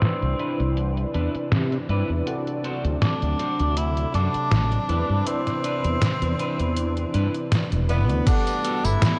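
A bright tenor saxophone with vibrato and scooped notes takes a jazz-style solo through analog delay over a woozy, dreamy vaporwave groove in C lydian at 80 BPM, moving from Cmaj9 to D7, where an up-front fretless electric bass, a detuned 8-bit drum machine with a fat, gritty snare, crash, hi-hat and tambourine, warbling lo-fi synth keys and a silky string machine in the background, a twangy, slightly broken-up electric guitar riff, and a thumpy electronic kick at 8.3 s all sit in lush hall reverb under a low-pass filter in this short cut from a longer piece.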